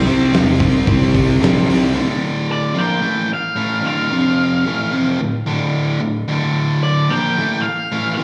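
Cathartic and brooding, this fragment of quiet-loud alternative rock opens with a biting overdriven guitar riff, dark and up front with slapback echo, that runs to the close. For the first 2.0 seconds it is joined by a bright, double-tracked high-gain guitar in the background, a very quiet thick fuzz guitar and a growly, up-front fuzz picked electric bass, while a big rock drum kit with a fat snare and punchy kick plays from 0.1 to 1.8 seconds. At 2.5 seconds an octave-fuzz lead guitar takes up a high, distorted melody with its own slapback echo, all heard as if from a live gig through the venue's PA, bathed in recital hall reverb.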